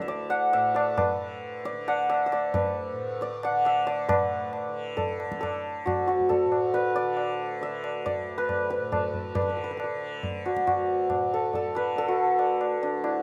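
A hammered santur and a softly plucked tanpura open this meditative, radiant Hindustani classical excerpt together, with the tabla joining at 0.1 seconds. The santur carries the melody in raga bhupali on D, its bright, shimmering, ringing tone sitting up front as it moves between D4 and F#5. Beneath it, the tanpura holds a low, buzzing drone that shimmers gently in the background. The low-tuned tabla, also close and present, has a short ring and a small-room character, touched by a slapback echo. The piece is in 3/4 at about 136 BPM with a straight feel, and it gradually speeds up throughout, shifting into a new section at 4.1 seconds. Recorded outdoors with light reverb, the sound is free of any room sound.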